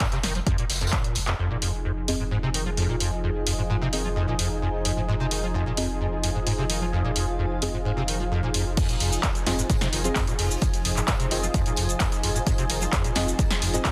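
A squelchy, resonant square-wave acid bass with tape echo and a filter sweep drives this trippy, raw acid house excerpt, joined by a round sine sub bass, an up-front punchy analog drum machine with handclaps, cabasa and crash, and a very quiet, dark acoustic studio kit, while a smooth detuned sawtooth pad enters on Fm7 at 1.4 seconds beside soft, dark, filter-swept chord stabs and a blurred granular cloud pad in the background, the sub bass and both pads pumping toward the drop at 8.8 seconds, where a punchy analog kick returns under a dense, heavily limited master.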